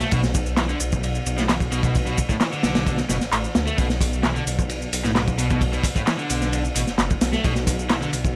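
Breakbeat in a swaggering, gritty mood, this short cut from a longer piece sits on a single Bm7 chord, with a crunchy, saturated breakbeat kit of tight kick, medium-tuned snare and dark ride cymbal pushed up front and layered with an electronic house kit's bright hi-hat, handclaps and shaker. A deep, rumbling detuned saw bass beats and sustains beneath, while an overdriven, double-tracked semi-hollow guitar picks a riff coloured by tube saturation, 12-bit sampler grit and tape echo. Small-room ambience wraps the parts. The guitar stops at 8.1 seconds and the house kit at 8.3 seconds, while the breakbeat kit and bass run on to 8.4 seconds.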